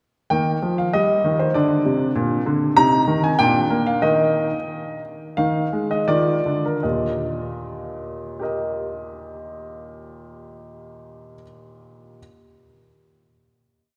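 Graceful and playful, this short classical-period piano sonatina in Eb major moves in 2/4 with a rubato feel between 77 and 99 BPM, a complete piece lasting about 12 seconds. A clear, intimate baby grand sits up front, carrying a single-line melody over a walking bass, and its natural tone lets the action noise come through. A wet church reverb with a 3.6-second tail surrounds it, the tempo slows from 3.4 to 6.8 seconds into a brief coda, and a final Eb chord rings from 6.8 seconds.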